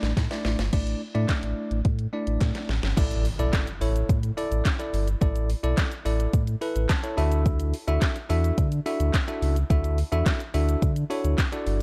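A straight 4/4 pulse drives this upbeat, euphoric dance-pop excerpt: an up-front electronic smooth R&B drum kit of soft kick, deep snare, dark hi-hats, shaker, handclaps and crash plays fills at the opening and again at 2.4 s; a full, sine-toned sub bass with octave, equally up front, pumps against the sidechain; and a bell-like, bright, clean tine electric piano pumps too, voicing chords that move from Asus4 to Dadd9 and adding a fill at 6.6 s, while a very quiet, crisp, dry group handclap joins at 1.3 s and a faint electronic impact lands at 3.0 s, all within a dark digital ambience.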